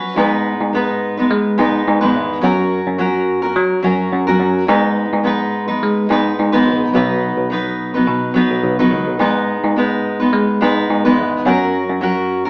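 Heard through an AM radio sound with a wet studio reverb, this reflective, wistful acoustic pop excerpt feels like a band playing live in one room, moving at 106 BPM in G# minor with a light sixteenth-note swing. A full-bodied, up-front fingerpicked steel-string acoustic guitar opens at 0.0 seconds, finger squeak audible, and carries the accompaniment. From 0.2 seconds a bell-like, bright tine electric piano takes the bass line beneath it as the chords cycle through G#m, F#, and B.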